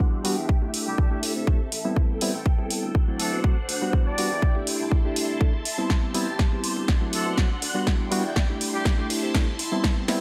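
Filtered disco house at 122 BPM in A dorian, this short cut from a longer piece feels funky and sensual, building across its full length under a steady filter sweep. A reedy, clean electric piano carries the accompaniment with phaser, sidechain pumping and a low-pass filter, while a swirling vintage string machine holds sawtooth chords with slow attack, long release, ensemble chorus and the same pumping and filtering. A very quiet fingered electric bass adds a direct, punchy low end beneath a layered electronic kick that sits up front. A punchy analog drum machine supplies hi-hat and a tape-warm snare re-recorded in a small room, its hats pumping with sidechain, and a drum fill runs from 5.9 seconds to the end. From 0.9 to 9.1 seconds a bright, tight horn section plays the melody with light vibrato and octave doubling, treated with sidechain pumping, a low-pass filter and dub echo, over chords moving through Em7, Am7, D7 and C6 in light reverb.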